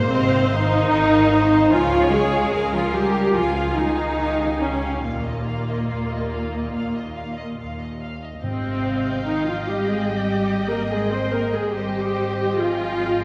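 This cinematic, emotional film score moves in a free, rubato pulse and feels uplifting and moving, taken from a longer piece. A con sordino string orchestra carries it: the symphonic violin section sings the melody from the background with vibrato, while a distant chamber violin section holds a veiled second line above it. The symphonic viola section sits close and up front with lush, dark accompaniment. Beneath them, the cello section bows with soft attack and light vibrato, and the double bass section adds a warm, muted foundation. The harmony drifts from Fm7/Ab through Db and Ebsus2 before settling on Abmaj7 at 8.4 s, where very quiet timpani with hard mallets sound close and dry. Generous scoring-stage reverb places the ensemble further back in the room.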